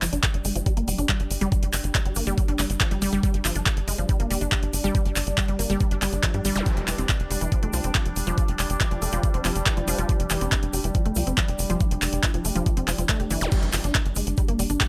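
Psychedelic trance at 140 BPM in straight 4/4, hypnotic and psychedelic, built on a G5 to F5 chord movement, with an overdriven, knocking electronic kick entering at 0.2 seconds up front alongside a tight, nasal sawtooth sequencer bass warmed by tube saturation and an overdriven drum kit of crash, handclaps and bright hats. A lush, detuned unison pluck carries the riff through digital delay and sidechain pumping, while a dark, morphing wavetable pad with a warbling vintage character holds sustained chords under phaser and its own reverb, with sidechain pumping. A grainy egg shaker sits in the background, brief electronic zaps land at 6.6 and 13.4 seconds, and a filter sweep on a synth arpeggio sound runs throughout this short cut from a longer piece, all in a dry mix.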